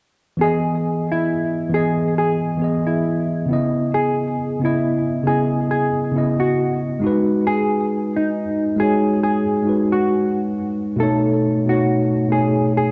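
Drenched in a long plate reverb, this dreamy, melancholic hip hop fragment, cut from a longer piece, has a nostalgic, swung feel. A worn, slightly out-of-tune tine electric piano carries the mellow chords from Emaj7 through C#m9 and G#m7 to B9. Up front, a dark, fingered hollow-body jazz guitar sings the melody through analog chorus and tape echo, both parts playing from 0.4 to 12.9 seconds.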